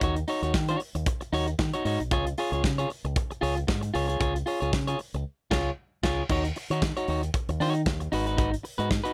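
Disco in Eb minor at 115 BPM with a sultry, driving swing on the 16ths, this short cut from a longer piece sets a picked, compressed electric guitar at the edge of break-up up front over a bright, fingered electric bass with an envelope filter and a mid-forward studio drum kit with a tight kick and a rolled-off top, moving from Ebm7 to Db and back to Ebm7 and Abm7, with a band accent from 5.3 to 6.3 seconds before the new section at 6.3 seconds, all in a dry sound.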